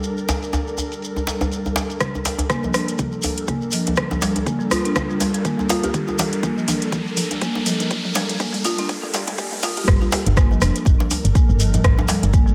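This afro house excerpt opens with an ethereal, airy pad holding sustained G minor chords beneath a produced afro-pop drum kit with metallic hats, rim clicks and toms, while a grainy shekere sits in the background and a deep, close djembe struck with hard hands enters at 0.3 seconds. At 122 BPM in 4/4 with a swung sixteenth-note feel, the mood is driving and earthy. At 2.0 seconds the harmony moves to Gm7 as a deep, up-front electronic kick and a rustic, boxy folk marimba arrive, the marimba playing arpeggios through tape echo and a filter sweep during a build-up that carries a drum fill. An electronic riser comes in at 4.6 seconds, a swell joins near the end of the build, and at 9.9 seconds the track drops into a round, woody FM bass with tube saturation and sidechain pumping. The mix is echo-heavy, set in a moderate echo chamber with digital ambience.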